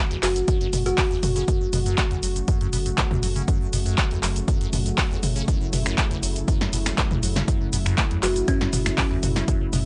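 A squelchy, resonant acid bass riff with phaser, lush chorus and a filter sweep drives this hypnotic, trippy acid house fragment at 120 BPM in straight 4/4, resting on F# minor with A4 tuned to 438 Hz, over a deep, round, detuned sub bass holding F#1, a soft-edged sawtooth pad of sustained chorused chords, both basses and the pad pumping to the sidechain, a dry, punchy electronic kick up front, and a punchy analog drum machine of cabasa, finger snaps, handclaps, hi-hat, snare and toms in small room ambience, while a woody, buzzing kalimba with analog delay plucks brief melodic phrases at 0.2 and 8.2 seconds, all captured in a dry, gritty, band-limited hardware recording cut from a longer piece.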